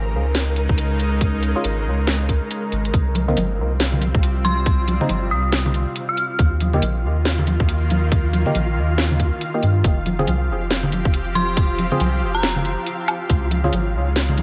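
Cavernous and heavy, this deep dubstep fragment rolls along in a half-time 4/4 with a swung sixteenth feel. A tense, nasal bowed-like drone holds sustained chords with vibrato and built-in reverb, while a round, soft dub sub bass sits up front and a grainy, flickering texture hovers alongside with its own reverb. The garage drum kit arrives at 0.3 s with a cracking snare, bright hats and woodblock, soon joined by a tight, layered electronic kick, and damped, thick-skinned congas enter at 3.1 s. A hollow, percussive organ stab carries analog chorus and dub echo, and an eerie, inharmonic dark detuned synth bell sings the melody in two brief spots, the first at 4.4 s, coloured by chorus and dub echo of its own. The mix sits in light reverb and a digital ambience, with a softly rolled-off top.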